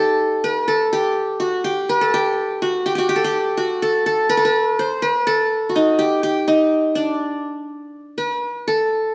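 A 9/8 metre with a straight feel carries this festive, stately Turkish fragment, where a solo qanun, bright-edged and plucked with fingerpicks on its triple strings, sits up front between D4 and C5 for about 9 seconds inside the reverberant wash of a stone room, as if cut from a longer live performance.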